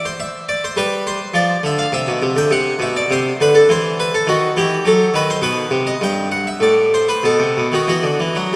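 Flowing and serene, this short baroque-style suite movement for solo harpsichord moves in 3/4 at 102 BPM with a rubato feel, and is cut from a longer piece. The Italian-style harpsichord sounds plucked, full and brilliant, with three sets of strings ranging from G2 to G5, and sits up front within a wet church reverb. Its harmony passes through C, D13/B, a D#dim7 and B before arriving on a B7 near 7.2 seconds.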